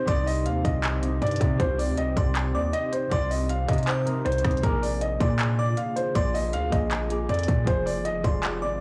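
Melancholic, hard-hitting hip hop trap in C minor at 158 BPM with a half-time feel, where a dark, mellow baby grand piano carries the melody up front with digital delay and audible action noise, a thumb-plucked concert harp rings beneath it, a deep, detuned analog pad sustains moody chords in the background with chorus and phaser, and a delicate, tinkling synth tine bell adds a high second line, while a punchy, saturated 808-style bass and a trap kit of hard-clipped kick, crisp hi-hat, handclaps and rim clicks drive the Cmadd9, Bb7 and Fm changes through a blown-out, overdriven recording with light reverb.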